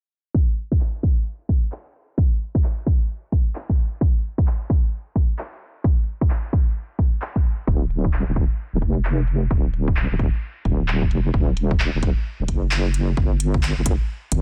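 UK garage in a skippy, moody two-step swing, this excerpt opens with a punchy, up-front electronic kick at 0.3 s, soon joined by a house kit of handclaps and metallic hi-hats in small room ambience, before a deep, mellow wobble bass with chorus arrives at 7.7 s, while a filter sweep runs throughout the dense, heavily limited, low-pass-filtered mix.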